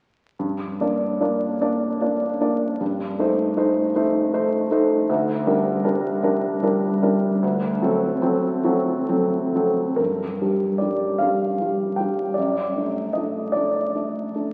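Yearning and mournful, this romantic nocturne for solo piano unfolds in G minor at a slow, rubato 6/8, with the dotted-quarter pulse hovering around 42-53 BPM in a passage cut from a longer piece. The clear, intimate concert grand sits up front, its deep bass and audible action noise lending a natural presence as the harmony moves from G minor through Am7b5/G to D7, then shifts to a new phrase at 10.0 s that settles on D/F# by 12.4 s. A long church reverb surrounds the instrument, and the crackle of a very old 78 rpm record gives the sound an aged patina.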